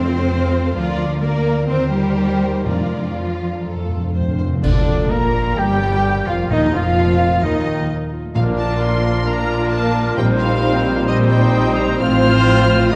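A smooth, lightly vibrato violin section carries the melody through this cheerful, lively excerpt from a fast romantic orchestral movement in Bb major at 130 BPM, played with rubato, over a lush bed of second violins, rich violas and cellos, double basses, ringing thumb-plucked harp arpeggios, and hard-mallet timpani that play a fill at 3.7 seconds. At 4.6 seconds the full band hits an accent with bright clash cymbals and bass drum as clarinet, oboe, an airy flute ensemble, a very quiet bassoon, dark French horn chords and soft-attack trumpet stabs join in. The timpani drop out at 10.8 seconds, and a wet scoring-stage reverb gives the whole a dark, warm sheen.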